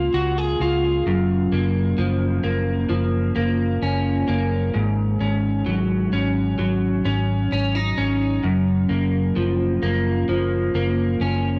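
A straight 4/4 pulse at 65 BPM carries this dreamy, ethereal dream pop excerpt, moving from Db6 through Gbmaj7 and Ab7sus4 back to Gbmaj7. Up front, a slightly broken-up, compressed electric guitar picks arpeggios washed in analog chorus, cassette tape and analog delay. Beneath it, a dark, foam-muted fingered bass adds round, punchy lows throughout the 11.6 seconds, the whole home cassette recording sitting in a wet studio reverb.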